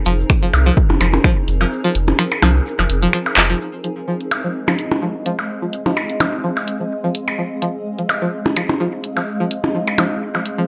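Hypnotic and cool, this minimal techno excerpt at 127 BPM in 4/4 and F minor, with a light swing on the 16ths, rides a thick, saturated sub bass and a twangy, warbling resonator pluck riff bright with chorus, phaser and analog delay, while a punchy, tape-warm drum machine of finger snaps, handclaps and filtered hi-hats, up-front percussion blips, a grainy tube shaker that stops at 3.6 s and an analog kick heard only from 0.3 to 1.3 s sit over a blurred granular cloud pad and a tense, swarming drone in the background, with the bass, pluck, pad and drone pumping under sidechain in a dry hardware sound.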